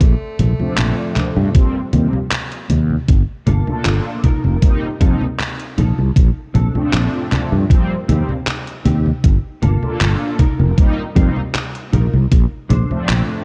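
This melancholic, hazy vaporwave fragment opens with a brief, distant tenor saxophone phrase, gritty and echoing, over a thumpy, tape-softened electronic kick, a detuned 8-bit drum machine of congas, handclaps and hi-hat with gated reverb, and a bright, growly fretless bass up front. Mellow synth brass enters at 0.6 s with round, detuned sawtooth chords carrying chorus and tape echo through Bbmaj9, Eb6, Gm9 and F7sus4. At 3.5 s a dark, clean, compressed electric guitar riff joins, chorused and echoing with lo-fi sampler grit, all within a dry, worn cassette sound.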